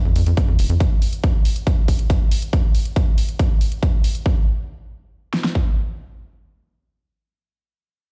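Uplifting trance with a soaring mood, cut from a longer piece, where a tight, plucky sawtooth sequencer bass with tube saturation and sidechain pumping drives up front until 0.8 seconds, an overdriven, layered electronic hi-hat pumps through the mix, and a big-room dance kit with a punchy kick and huge overdriven snare enters at 0.4 seconds, all carrying only a touch of stone room reverb as if played on a big sound system in a bare room.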